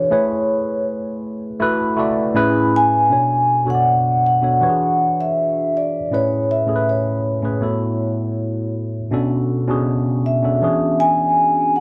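A soft-mallet vibraphone carries the melody up front, its ringing, airy tone shimmering with a slow motor vibrato and trailed by tape echo, in this cinematic, bittersweet soul fragment at 80 BPM in 4/4 and B dorian. Beneath it, a worn, slightly out-of-tune tine electric piano plays a clean accompaniment through a combo amp and a phaser. The harmony moves from Amaj7, D69/A and Amaj9 into a Bm7, E13, Amaj7, A69 progression from 3.1 seconds, all set in a light, small-room reverb.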